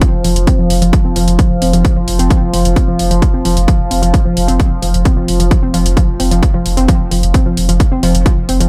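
A straight 4/4 pulse at 131 BPM drives this hypnotic, intense peak-time techno excerpt, built on a heavy, overdriven kick sitting up front in a small room, with layered overdriven hi-hats that pump against it. Beneath, a deep, thick saturated sub bass holds F1 through a low-pass filter, while a dusty, lo-fi pluck riff between F3 and C4 warbles with detuned chorus, overdrive and digital delay, its dark decaying notes shaped by a filter sweep. A vintage analog drone on F3 swells in with a slow attack and sustains with pulse-width movement and chorus, pumping along with the pluck and bass in a dry, close mix around an F5 chord.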